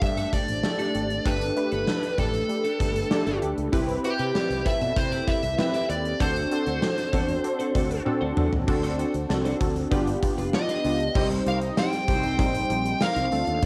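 A dark, overdriven lead guitar carries the melody up front in this moody, nostalgic 1980s-style pop excerpt in a straight 4/4, set over detuned sawtooth analog keys with a filter sweep and chorus, a growly fretless bass, and a bright, compressed twelve-string riff tucked in the background until 11.0 s. A gated drum kit with a punchy kick, bright cymbals and tambourine plays throughout and adds a fill at 8.1 s, and punchy, smooth-topped horn stabs arrive at 11.5 s, shortly after the harmony turns to a minor chord. The cassette-tape home recording sits in moderate studio reverb, giving the whole a hazy, homespun polish.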